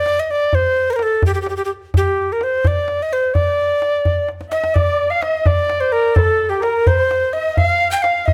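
Close, detailed microphones and a light reverb give this excerpt from a longer Persian modal piece an intimate, present sound. A breathy alto recorder carries the soulful, melancholic melody from the very start, up front with a wooden tone, a crisp chiff on each attack, vibrato and an unsteady quality. A tombak joins almost at once in 6/8, tight, close and dry, its hard hands placed just as far forward as the recorder. The drum plays a fill at 4.3 seconds as the music moves into its second section, and at 4.5 seconds a dark, bowed kamancheh enters as a second line. This single player sounds distant and quieter than the others, with its own vibrato and sliding portamento adding to the mournful mood.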